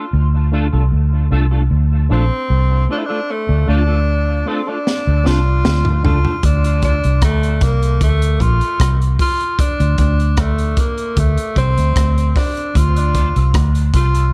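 A straight 4/4 dub reggae groove at 76 BPM in D minor, heavy and deep, is anchored by a dark, round, foam-muted vintage fingered bass sitting up front from 0.1 seconds, while a crunchy, saturated breakbeat kit with a high-tuned snare and punchy kick enters on a drum fill at 4.9 seconds. A bright, twangy electric guitar through an envelope filter, chorus and dub echo plays accompaniment early on and returns at 13.1 seconds, with a filter sweep on the clean guitar from 9.6 seconds, as the harmony moves from Dm to a rootless Bbmaj9 and back. A distant, roomy tenor saxophone with light vibrato carries the pop-style solo melody through dub echo in an echo-heavy mix with small room ambience, in this excerpt cut from a longer piece.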